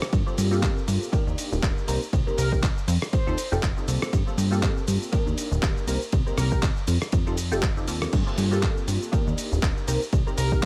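A swung sixteenth-note groove in 4/4 drives this funky, nostalgic slice of filtered disco house. A punchy, tape-warm electronic kick sits up front beside a gritty, sampler-style soul kit of hi-hat, handclaps, rim click, cabasa, ride and crash, re-recorded in a large room. A plucky sawtooth-and-pulse analog bass with a moving notch and a detuned, mellow polysynth comp cycle through Gm11, Ebmaj7, Cm7 and F9, both breathing with sidechain pumping, while a clear, tight trumpet section with light vibrato plays a short line from 2.4 to 6.6 seconds before a brief return at 10.4 seconds.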